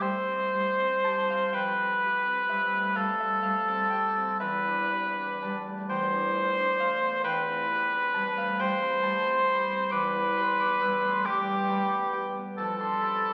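A clear cor anglais and a concert harp begin together, opening an impressionist classical duo in C major that drifts in a slow, rubato 6/8 of roughly 38-46 dotted-quarter beats per minute. The cor anglais carries the melody up front as a solo voice, its tone punchy yet light-vibratoed, moving in a narrow band between G4 and C5 in a poised classical style. Beneath it, the harp supplies fingerpicked, ringing accompaniment that spans from deep C2 up to a bright E6, sitting further back in the balance. The harmony glides through colorful chords such as C6, Fadd9, Em7 and Cmaj7/E before settling on F69 near 12.6 seconds, giving the passage a dreamy, luminous glow. A wet recital-hall reverb surrounds the pair, while the crackle of a very old 78 rpm record lends an aged patina to this brief fragment cut from a longer piece.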